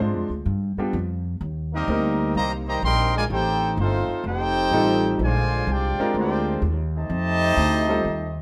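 A clear, intimate grand piano with audible action noise and deep bass opens alongside a woody, growly pizzicato upright bass in this brassy, swinging big band excerpt at 126 BPM, and at 1.7 s a smooth-topped trumpet section takes the melody up front while a warm trombone section with light vibrato and a soft attack carries a second line over G7, Cm7, F9 and Bb9 harmony in a moderate large-studio reverb.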